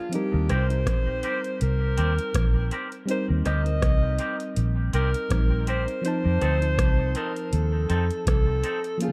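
A dark, lightly reverberant mix frames this tender, sweet lovers rock reggae excerpt, where a vibrato-laden alto saxophone sings the melody over mellow FM electric piano, an up-front booming analog drum machine with deep kick, metallic hats and rim clicks, a round, punchy foam-muted bass entering at 0.3 seconds, and bright, twangy guitar stabs, the saxophone, piano and guitar each trailing tape echo as the harmony moves from Eb6 to F7 at 6.0 seconds.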